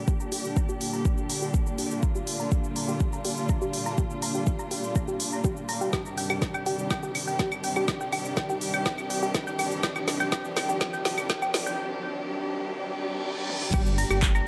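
A rich, bowed string section holds sustained chords from the opening, its biting vibrato sitting up front and pumping against the sidechain as a filter sweep moves across it through this cinematic, driving melodic techno build-up in G minor at 123 BPM. Above it, a tight sequenced synth spins wave-folded arpeggios with a filter pluck, coloured by chorus, phaser and digital delay, and it rides the same sweep. A deep electronic kick anchors the straight 4/4 pulse, joined by a layered deep house kit of woody snare, smooth hats, claves, shaker, handclaps, toms and crash, with a drum fill arriving at 5.9 seconds as the harmony moves from Gm to Cmadd9/G. An electronic riser climbs in the background, then a break and a reverse cymbal lead into the return of Gm at 13.7 seconds, where a menacing, detuned saw bass swells in on a low G. A moderate, lush hall reverb gives the track a polished digital ambience, and this passage is cut from a longer piece.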